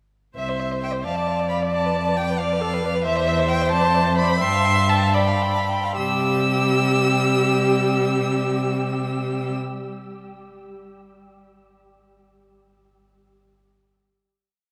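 A quick, spirited and cheerful classical-period movement for string quartet in C major and 6/8, its rubato pulse of 70-92 BPM slowing from 2.4 to 6.0 seconds into a held final chord, with a rich, distant first violin carrying the melody up front, a second violin gliding with portamento through a rocking two-note figure and sustained chords, a smooth viola adding a counter-melody, and a close, expressive cello holding the sustained bass, the quartet set in a vast, echoing cathedral reverb with a faint mains hum.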